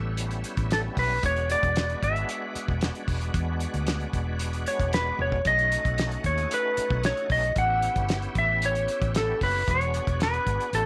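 Set in a small room with light reverb, this gritty, laid-back excerpt of straight-eighth soul blues moves at 114 BPM in E mixolydian, cycling through A7, E7 and B7. A clean, twangy lap steel guitar played with fingerpicks carries the slide melody up front. Beneath it sit a full, shouting tonewheel organ with key click, light overdrive, chorus vibrato and a slow rotary speaker, and a dark, round, foam-muted fingered electric bass. A cloth-damped, thuddy drum kit with a fat snare and tight kick enters at 0.2 s and plays a fill at 5.2 s.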